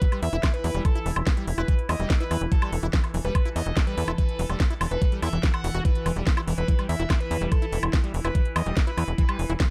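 A dry, close-sounding excerpt of hypnotic, intense psychedelic trance at 144 BPM in E harmonic minor, held on an Emadd11 chord, where a knocking, up-front electronic kick and a tight, nasal sequencer bass entering at 0.2 s drive everything alongside a garage kit of cracking snare, metallic hats and woodblock. In the background, a squelchy acid bass riff with chorus and dub echo and a resonant drone of moving overtones, treated with chorus, reverb and phaser, both pump against the kick. On top, a gritty, screaming, guitar-like synth lead with vibrato carries the melody through distortion, phaser, cassette tape grit and tape echo until 9.4 s.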